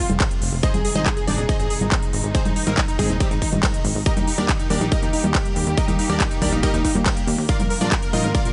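Euphoric yet bittersweet, this short excerpt of uplifting trance runs at 140 BPM in a straight 4/4, with a detuned supersaw stab carrying the melody through lush chorus and digital delay while a catchy, bright unison lead sits further back as a second line, both pumping against the sidechain. Beneath them a veiled, con sordino string section holds distant bowed chords over a harmony that moves from Fmadd9 through Ab and Eb to Bb, and a funky, wave-folded analog bass with tube saturation enters at 0.1 s alongside a crisp-hatted big-room kit of congas, handclaps, hi-hat and ride. A punchy, tape-warm electronic kick arrives up front at 0.2 s, and the dry mix keeps its top end rolled off above 10.9 kHz.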